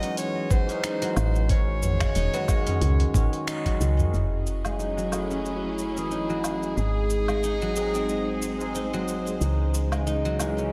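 Organic downtempo with a meditative, mystical air, this dreamy, reverb-soaked passage cut from a longer piece sets a bright, close-miked clarinet melody over a barky, bell-like electric piano with lush chorus and delay, silvery fingerpicked guzheng arpeggios, and a gritty, dusty soul sampler-style kit of cabasa, finger snaps, hi-hat and woodblock, joined by low-tuned tabla in the background until 4.1 s. A thumpy electronic kick sits up front from 0.5 s to 3.8 s, capped by a band accent, while a dark, round, woody FM bass pumps beneath from 1.2 s. At 4.1 s a clear, focused studio string section enters with sustained bowed chords and vibrato as a filter sweep moves across the guzheng, and the clarinet falls away at 9.1 s.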